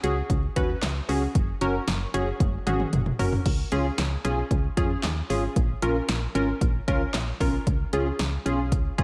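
A dreamy mix soaked in lush hall reverb, with a faint mains hum beneath it, frames this upbeat, nostalgic synth-pop clip, cut from a longer piece and set in a straight 4/4. Up front, a punchy analog drum machine with a tape-tinged character, re-recorded in a small room, drives the groove with kick, snare, hi-hat, handclaps, toms and crash cymbal. A drum fill runs from 2.4 to 3.5 seconds. A funky polysynth comp, also up front, blends detuned sawtooth, square and sine tones with a sub octave, a filter pluck on its fast attack, and sustained, chorus-treated notes. Beneath it, a round, mellow FM bass with a quick, decaying attack holds the low end as the chords move from Db7sus4 to Gbadd9, then into a second section that cycles Db, Bbm and back to Db.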